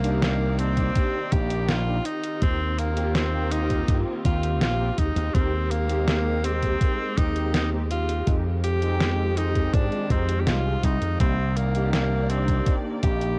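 Nostalgic and woozy, this 82 BPM vaporwave excerpt drifts through Cm9, Eb69, Abmaj9/Eb and Fm9 as a clear, forceful tenor saxophone carries the melody with light vibrato and tape echo over mellow, detuned synth brass with subtle chorus, a distant bowed string section with soft attack and portamento, a bright, punchy slap bass with an envelope filter up front, a detuned 8-bit drum machine on hi-hat and snare, and a thumpy electronic kick entering at 0.8 seconds, all steeped in the dry, tape-warm sound of a home cassette recording.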